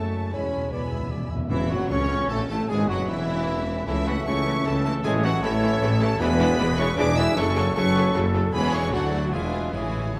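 In a rubato three-four lilt, this dramatic, spirited romantic orchestral excerpt sets a lush, focused violin melody over a smooth-topped second violin line, airy flutes, a mellow cor anglais and a brief clarinet that stops at 1.1 seconds, with intense violas, even cellos and a clear double bass section joined by very quiet French horns and distant trombones and tuba, while hard-mallet timpani, a dark trumpet entering at 1.5 seconds and bright tam-tam and cymbal swells ring in a wet scoring-stage reverb.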